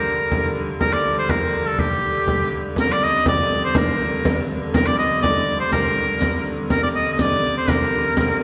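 A bright, vibrato-laden shawm leads this mysterious, driving medieval dance in G minor at 122 BPM, its up-front folk melody carried over a clear, nasal hurdy-gurdy drone and a deep, dry frame drum struck with hard hands, while a riq with dark jingles joins at 2.8 seconds, all set in a wet church-like reverb in this short cut from a longer piece.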